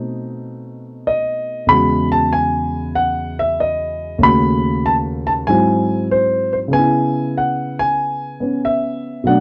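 Swung eighth notes in an easy 4/4 carry this short solo jazz piece, cut from a longer performance and lasting 9.4 seconds. The mood is late-night and smoky. A single concert grand piano plays throughout, reaching from its deep bass up into the upper register, with a dark, mellow tone and short sustain. The harmony moves through B7b9 and E69 before a minor ii–V of D#m7b5 to G#7b13 comes to rest on C#m7 near the close. The piano sits up front in a dry, close, 1970s-style studio sound, touched by only a light reverb, giving the recording a vintage character.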